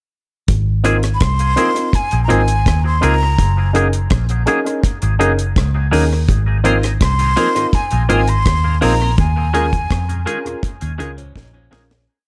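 A breathy jazz flute carries this short, complete lovers rock reggae piece, singing tender, motif-based song phrases with vibrato, a soft attack and lifted highs, trailed by dub echo. Beneath it, at 83 BPM in a straight 4/4 and in Ab mixolydian, a dry, acoustic drum kit plays an up-front rockers groove: a tight kick on every beat under a backbeat accent, with hi-hat, rim click and a high-tuned snare, also touched by dub echo. A dark, foam-muted fingered electric bass sits just as close, round and punchy, weaving a melodic line with slides. Off-beat chops come from an intimate grand piano, its action noise audible, and from a clean, compressed, twangy electric guitar with its own echo. A piping tonewheel organ with key click and slow rotary speaker enters at 6.5 seconds in the background, shuffling an organ bubble. The romantic verse moves through Ab69, Gb69 and Eb7sus4, begins fading at 9.2 seconds, and closes on a drum fill while a faint, slightly broken-up, lo-fi guitar adds brief fills in sixths at 11.2 seconds, all set in a studio reverb.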